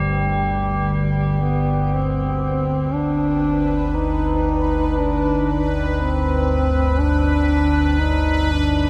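A dark, vibrato-laden duduk sings a folk-style melody with scooped notes, and metallic tubular-bell arpeggios ring beside it, both trailed by shimmer reverb and diffuse ambient delay, over a detuned, warbling analog drone thickened with chorus; at 3.2 seconds a bubbling, resonant sawtooth texture with random filter steps joins, and the whole slow 59 BPM dark ambient drone in G major sits in a huge, cavernous reverb that leaves this fragment of a longer piece feeling unsettling.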